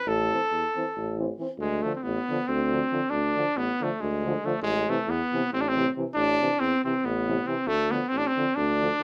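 Set in 7/8 with a straight feel, this fiery yet bittersweet Balkan brass band piece is cut from a longer performance. The trumpet carries the melody up front, its tone clear with a smooth top. Beneath it, the tuba anchors the bass with a vintage, band-limited character. A close-miked trombone and a euphonium with light vibrato supply the accompaniment from the background, the euphonium sounding distant and roomy. The harmony moves between Am and Dm, returning to Am at 4.6 seconds and back to Dm at 7.7 seconds. All four players perform live together in a moderately ambient studio room, with every horn played in a classical style.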